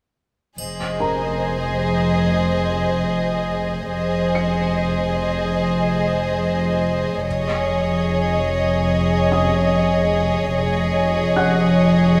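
Uneasy and tense, this cut from a longer suspense film score moves at 72 BPM in 4/4 over a single Fm7 chord in F phrygian, with bowed string sections entering at 0.6 seconds, softly attacked and played sul tasto. A shadowy violin section carries an Eb5 melody with vibrato, while a warm, up-front second violin line sits beneath it and cellos and double basses anchor the low F; a bright, dry triangle sounds until 2.2 seconds. From 1.0 seconds a felt-muted upright piano adds mellow background texture with audible action noise, and the whole is set in a moderate scoring stage reverb.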